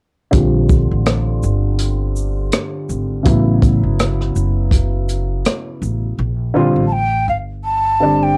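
Swung sixteenths in 4/4 give this relaxed, smooth jazz-hop excerpt a lazy hip hop sway, carried by an acoustic drum kit with a boomy kick, hi-hat, rim click and shaker that drops out at 6.0 seconds. A dark, worn upright piano with audible action noise and a cassette-tape haze plays slightly detuned chords over a woody, plucked upright bass, moving between Bb69 and A7. At 6.9 seconds, a breathy, hollow flute enters with a brief high melody over light reverb, adding to the intimate home-cassette feel.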